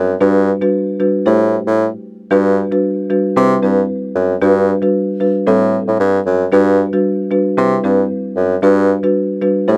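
Set in a small room with light reverb, this breezy, romantic afrobeats excerpt at 114 BPM in G major pairs an up-front bassoon bass line, with light vibrato and a classical touch, with a woody, rustic folk marimba played with soft mallets that enters at 0.2 seconds, its dry, round tone set over a progression cycling through Gmaj7, Am7 and Cmaj7 and a gently swung sixteenth-note feel.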